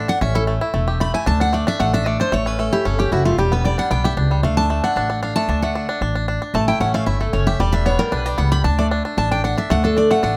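Lightly reverberant and close, this lively, rustic bluegrass excerpt in D major races along at 228 BPM, with a picked steel-string acoustic guitar taking a solo across the full 10.4 seconds, its fresh strings and finger squeak ringing out over chords moving through A, D5, Em7 and D, while a bright, twangy banjo played with fingerpicks carries the melody and a woody, thumpy pizzicato upright bass on gut strings anchors the low end.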